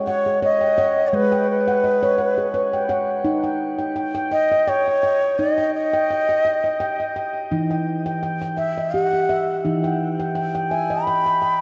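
A dark, warm production sets this short cut from a longer piece inside a wet echo chamber with small-room ambience, giving a hypnotic, gentle world-meditative mood in a lilting 3/4 with a light swing. A ringing stainless-steel handpan, played with the fingertips and heard boxy and up front, lays down arpeggios from the opening second, bathed in shimmer reverb and tape echo. From 0.1 seconds a breathy bamboo bansuri carries the tongued melody with vibrato, also close and up front and sharing that shimmer reverb and tape echo, until both parts end at 11.6 seconds.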